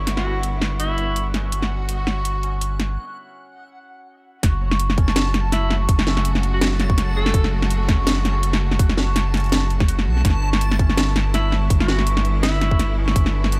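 Tense and dark, this half-time drum and bass excerpt opens with clear, bowed strings holding sustained chords that pump against the beat, while a mellow, shimmering santur plays arpeggios roughened by vintage 12-bit grit and tape echo over a deep, saturated sub bass. A reversed, dreamy granular texture hovers in the background, and a bright alto saxophone with light vibrato and delay plays short melodic phrases, first at 0.2 seconds. After a break, the drop at 4.4 seconds brings in a tight, overdriven electronic kick up front, joining the drum kit's cracking snare and bright hats.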